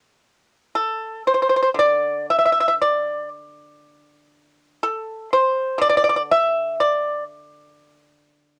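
Chinese traditional solo plucked-string music, elegant and flowing, moves in free rubato time in this short cut from a longer piece. A lone pipa enters at 0.8 seconds, acoustic and up front, its fingerpicked tone dry and percussive, ranging from D3 to E5. The home cassette recording adds a tape character and a moderate studio ambience.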